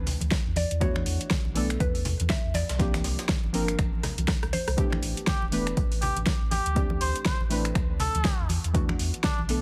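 Deep house with a hypnotic, smooth swing, cut from a longer piece, built on dark, warbling chord stabs with chorus and delay and a round sine sub bass, both sidechain-pumping, alongside an overdriven punchy electronic kick and a layered deep house kit of fat snare, metallic hats, finger snaps and rim clicks. Low-tuned congas sit dry in the background while a very quiet, gritty breakbeat sampler kit adds texture, and a drum fill arrives at 4.0 seconds. A woody FM mallet-like pluck carries the melody until 4.8 seconds, then a veiled cup-muted trumpet with light vibrato and delay takes over from 5.3 seconds, all in a dense, dry master dusted with vinyl crackle.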